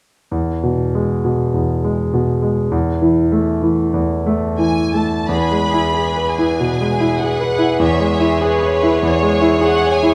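A clear, polished concert grand piano leads this passionate, lush romantic movement for piano and orchestra, sitting up front with a deep, present bass as it carries the melody from 0.3 seconds. The music moves in 4/4 at a flexible 81-103 BPM with a rubato feel, in E major, tuned to A4 = 437 Hz, and it is cut from a longer piece. At 4.6 seconds an intense symphonic violin section joins on the melody, heard at a distance with bowed vibrato. A focused studio violin section follows at 5.3 seconds with a rich second line in a middle register, also bowed and distant. The harmony rests on an E pedal, moving through A5/E and C#m7/E, while moderate scoring stage reverb gives the whole a spacious bloom.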